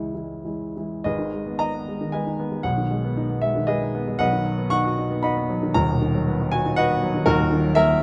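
A warm, up-front grand piano with short sustain plays alone in this passionate, brooding romantic character piece in 3/4, its uneven, rubato beats carrying a brief opening on C#m that gives way at 1.1 seconds to a longer passage moving through G#m and B toward D#m, captured close and detailed with light reverb in a fragment cut from a longer work.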